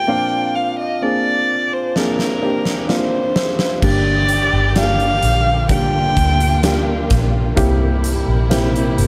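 Hopeful and tender, this slow pop ballad at 64 BPM opens with a dark, woody solo violin carrying the melody through a tape echo over a slightly detuned upright piano, both sitting up front. A huge arena drum kit arrives at 2.0 seconds with a fill, its fat snare, punchy kick and bright cymbals pumping in a hall-like room, and at 3.8 seconds a round, foam-muted electric bass joins alongside a lush, distant string section whose expressive portamento and vibrato colour the shift through Gm to C7. The violin stops at 7.1 seconds, and the short cut is set in light reverb.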